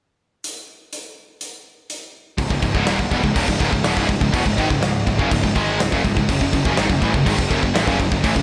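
A big rock drum kit opens this dark, aggressive heavy metal excerpt at 123 BPM in C# minor, its punchy kick, medium-tuned snare, hi-hat and bright crash cymbal sitting up front in a stone room. At 2.4 seconds three picked guitars arrive together on a low riff over C#m, moving to F#5 at 6.3 seconds: a tight distorted one and a scooped high-gain one, both held in the background, and a very quiet double-tracked overdriven one. A growly fuzz-driven picked bass enters at the same moment beneath them, with light reverb over the whole mix.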